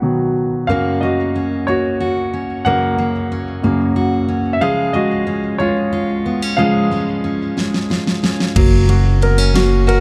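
A clear concert grand piano with deep bass opens this heartfelt, romantic six-eight pop ballad in F# major at a slow 61 BPM, soon joined by a woody, full-bodied fingerpicked steel-string acoustic guitar playing arpeggios through a touch of delay, over chords moving from B to F# and C#. A punchy, produced pop drum kit with a fat snare comes in with a fill at 7.6 seconds, and a thumpy pizzicato upright bass arrives up front on F# at 8.6 seconds as a new section begins. The whole short cut sits in a small room with light reverb and a dark, warm production.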